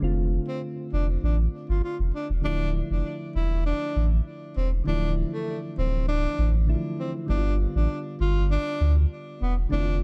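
A breathy tenor saxophone carries the melody from 0.5 seconds, its whispered, intimate tone touched with digital delay and sitting softly in this sultry, hypnotic afrobeats excerpt at 99 BPM in D dorian. Beneath it, a deep, round sub bass sits up front, its sustained low notes giving the groove its weight. Soft electric-piano-like synth keys supply gentle, decaying chords treated with chorus, moving from F6 to Dmadd9 at 2.4 seconds and on to G7 at 7.3 seconds. The straight 4/4 feel and dry sound keep the mood mellow and unhurried, though lossy compression artefacts colour the recording.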